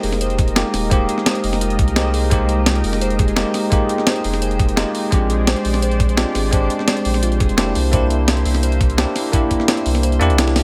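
Liquid drum and bass with a lush, melancholic mood, built on a bell-like, bright tine electric piano with delay and a deep, saturated sub bass, both up front, over a thick, warbling detuned pad that pumps with sidechain and a soft, harp-like synth pluck with chorus and digital delay ringing out arpeggios in the background. A gritty, tape-toned breakbeat kit with a medium-tuned snare and hi-hat drives the groove, joined by a thumpy, compressed electronic kick from 0.4 s until it stops at 9.6 s, with a drum fill at 10.5 s. The harmony moves from Fm11 to Bb13 and then C7, all within light reverb and digital ambience in this short excerpt from a longer piece.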